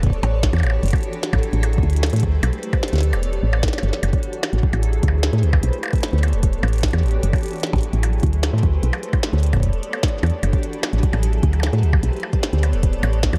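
A soft, woody FM bass with a fast attack and round, decaying tone sits up front from E1 to A2 in this melancholic, glitchy IDM excerpt at 150 BPM in F# phrygian, underpinned by a deep, tape-warm electronic kick and a quieter glitchy kit of clicky hats, tiny snare and percussion blips touched with digital delay, all in a dark digital ambience.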